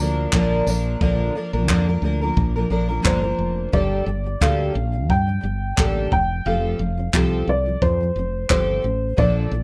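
A shimmering, octave-doubled fingerpicked twelve-string acoustic guitar, lightly touched with chorus, carries the accompaniment in this heartfelt, easy-going acoustic pop excerpt, while a dark upright piano with a boxy, long-sustaining tone sings the melody up front. A round, woody fretless electric bass anchors the low end, and a compact cocktail drum kit with a punchy kick, handclaps and tambourine enters at 0.3 s, its top rolled off in a small room. The harmony moves from Bb to Gmadd9 at 3.7 s and Fadd9 at 6.1 s over a lightly swung sixteenth feel, all captured with a dry sound.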